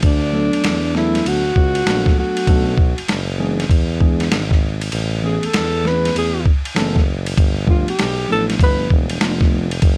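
A breathy alto saxophone leads this cool, nocturnal jazz-hop excerpt, its whispered, intimate tone carrying light vibrato and scooped notes up front from 0.1 to 8.9 seconds over a swung 98 BPM groove in 4/4. A gritty, compressed, pitched-down boom bap kit with a thumpy kick, medium-tuned snare, hi-hat and ride sits prominently, the kick dropping out between 4.9 and 6.2 seconds, while a soft, vibrato-laden tuba holds the low end and a clean, mellow tine electric piano comps through D6, Bm7, E7, Amaj9 and G9. Light reverb gives the mix a gentle sense of space.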